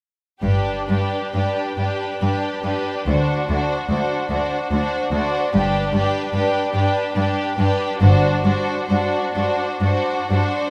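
A moderate scoring-stage reverb gives this short excerpt from a longer classical piece a spacious bloom around a string orchestra playing a slow, lyrical romantic movement in G major. In 3/4 at roughly 59-75 BPM, the rubato feel lets the tempo breathe as the harmony moves from G to D7 at 3.1 seconds and settles back on G at 5.5 seconds. A clear, smooth violin section carries the melody, while a second violin section adds a rich, focused line that sits farther back. Up front, a bright, lush viola section holds the accompaniment, and a cello section with an intense edge anchors the bass alongside a dark, woody double bass section whose soft attack drops out of the texture at 8.4 seconds. Every section is bowed with vibrato, and the overall mood is warm and lyrical.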